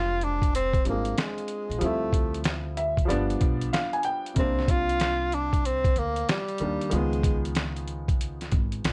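The recording has a light reverb, fitting this mellow, nocturnal jazz-hop snippet cut from a longer piece of hip hop. A sampler-style boom bap kit sits up front, its compressed, pitched-down, tape-warm hits giving a gritty edge, with a thumpy kick, a medium-tuned snare and hi-hat over a swung sixteenth-note feel. An upright bass plucks a woody, dark line underneath, while a worn, boxy baby grand piano plays intimate accompaniment with short sustain and audible action noise, stepping forward with a fill beginning at 2.5 seconds. Also up front, a warm tenor saxophone carries the solo melody in jazz style, with vibrato, scooped notes and a smooth top, bathed like the piano in plate reverb. The saxophone drops out at 7.6 seconds, leaving the piano, bass and drums to ride the closing Db7 chord to the end.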